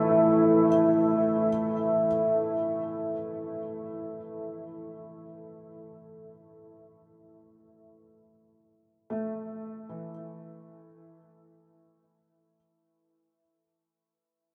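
A huge, wet ambient reverb with a long 8.3 s tail soaks this dreamy, spacious excerpt, cut from a longer ambient piece in free time. A solo felt-muted upright piano sits up front with a mellow, intimate, vintage tone, ranging from E3 to E5 over an Esus4 harmony, colored by lush chorus and diffuse ambient delay. The reflective mood drifts as the recording fades out from 1.3 to 12.5 seconds, with the piano ringing until 13.4 seconds.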